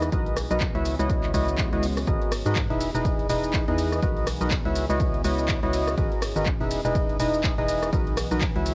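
Energetic and soulful, this piano house piece at 123 BPM rides a swung 16th-note groove in 4/4, tuned to A4 = 435 Hz, and loops a Bmaj7, C#m11, G#m9, Emaj7 progression. Up front, a hollow, mellow percussive organ stab carries the riff through analog chorus, tape echo and cassette grit, pumping against a punchy electronic kick alongside a dark, organ-like FM bass, while an analog drum machine supplies handclaps, hi-hat, ride cymbal, rim click and shaker. A deep, moody ambient pad of detuned saws sits in the background with chorus and built-in reverb, and a very quiet electronic swell sounds between 1.3 and 2.1 seconds, all captured as a cassette home recording with light reverb.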